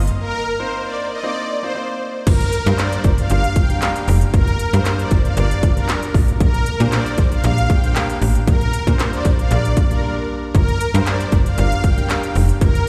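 A clear baby grand piano and a snappy, metallic FM bass open this bittersweet, driving dance-pop clip, both pumping against the overdriven, punchy pop drum kit of kick, crisp hi-hat, handclaps and crash, while a lush, detuned supersaw pad carries the melody with slapback echo and digital delay, all heard as a live gig through the venue's PA with recital hall reverb as the harmony moves from F7sus4 to Gm7 at 2.3 seconds.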